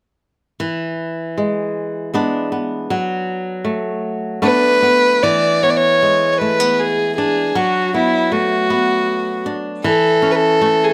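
A rubato sway in three carries this wistful, tender Celtic slow air, cut from a longer piece, as a warm, fingerpicked acoustic flamenco guitar opens the accompaniment up front at 0.6 seconds, joined at 4.4 seconds by a dark, woody, single bowed fiddle with light vibrato singing the melody up close, in a detailed recording touched by light reverb.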